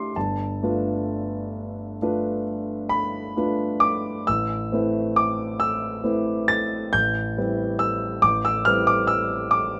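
Close, detailed microphones and a light reverb place a warm concert grand piano up front, near enough that the noise of its action can be heard beneath the notes. This brief fragment of a longer impressionist solo piano piece has a serene, luminous mood, unfolding in a lilting 9/8 with a free, rubato feel. The instrument's tone is smooth and intimate, with a vintage character and deep bass that reaches down to G1 while the upper range extends to A6. The harmony drifts from a G9 chord at the opening to Amadd9 at 4.3 seconds and then to Am11 at 6.9 seconds, colouring the passage with rich, added-note sonorities. The piano plays alone throughout the roughly ten seconds, giving the moment a calm, unhurried glow.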